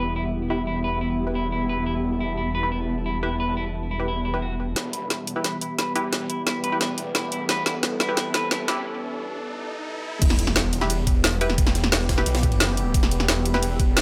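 A snarling, overdriven saw bass growls up front through this tense, futuristic fragment of dark technical drum and bass in E minor at 176 BPM, set under a sweeping, warbling pad with 12-bit sampler grit, a blurred granular cloud pad, a clean picked electric guitar playing arpeggios until 8.6 seconds, and muted, chorused dub chord stabs. The overdriven drum kit with its woody snare and bright hats enters at 4.8 seconds for a build-up with a filter sweep on the guitar, a riser and sub drop, and a brief break. At 10.2 seconds the drop hits with an impact, a knocking overdriven kick and a very quiet, gritty, pitched-up jungle kit heard in a large room.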